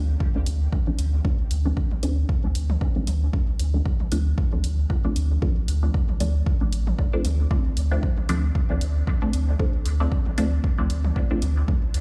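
A 115 BPM dub techno groove in 4/4 with a 56% swing on the 16ths, this cavernous, deep cut sits on a Dm7 in D minor for its 12 seconds, as a punchy, overdriven electronic kick up front and a tape-warm analog hi-hat arriving at 0.5 s drive alongside a round, sine-like sub bass that pumps with the sidechain, while a muted, detuned sawtooth dub chord stab runs through phaser, dub echo, pumping and a filter sweep, and layered electronic toms with echo and pumping sit in the background, all heard as if played through a big sound system in a bare stone room.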